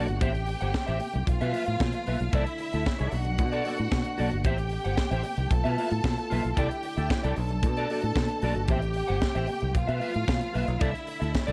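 The recording has a dark, warm production with light reverb, cut from a longer disco piece that moves at a straight 113 BPM in 4/4 and A minor, with a driving, glamorous mood. Up front sit a tight funk drum kit, recorded in a small room with a high-tuned snare and a snug kick, and a fingered electric bass with a foam-muted, punchy, direct tone that ranges from G1 to B2. A lush, bowed string section carries a second line from E4 to A5 with vibrato, a focused character and a smooth top, bathed in plate reverb. A clean, dark electric guitar plays accompaniment through ensemble chorus and plate reverb, while a mellow, close-miked French horn section holds sustained chords in the background. Bright, high-tuned congas with a thin skin join at 0.2 seconds, sounding distant in a large room. From 0.2 seconds onward, the harmony cycles through Am7, Fmaj7#11/B, C69 and Bm7 across the excerpt.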